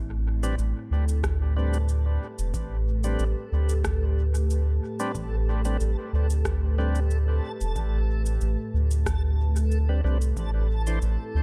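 A dark, spacious slice of ambient dub in A minor at 92 BPM, this excerpt rests on a single Am11 chord, where a round, up-front sub bass sits beneath a warbling, lo-fi tape-like pad with chorus and vintage sampler grit, while a reversed, swelling texture glints faintly on a single high note. From 0.4 seconds, gritty overdriven tonewheel organ stabs turn through a slow rotary speaker and dub echo, joined by electronic cabasa and rim click soaked in echo and reverb. A deep, overdriven kick drum sits in the background from 1.2 seconds, adding to the spacious, deep mood.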